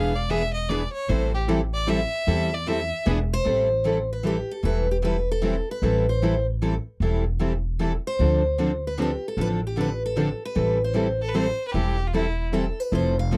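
Swinging and virtuosic, this fragment of acoustic string swing in A minor moves at 152 BPM in 3/4, opening with a clear, focused bowed violin solo full of vibrato that gives way at 3.3 seconds to an up-front, bright picked concert steel-string guitar melody, while a boxy plugged-in parlour guitar and a fresh-stringed dreadnought in the background pick out accompaniment over a woody, thumpy pizzicato gut-string upright bass, the violin briefly returning at 11.2 seconds, all captured in a dry, close 1970s-style studio sound with a faint mains hum.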